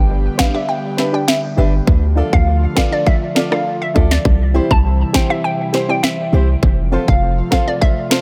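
A deep, boomy 808-style bass sits up front in this bouncy, summery dancehall excerpt, its fast attack decaying under a chord cycle of G, Dm, C and F. The electronic island pop kit joins at 0.4 seconds with a tight kick, sharp snare and rim click, also placed forward in the mix. Carrying the melody, a hollow square-wave pluck with a detuned edge, a moving notch and a filter sweep is treated with chorus and dub echo. Beneath it, an airy, breathy pad holds sustained chords with a slow attack and long release, while a soft, round, nasal pluck adds background accompaniment through chorus and dub echo. A fingerpicked acoustic archtop guitar plays arpeggios in the background with audible finger squeaks, and the dry, echo-heavy mix keeps the groove light and open.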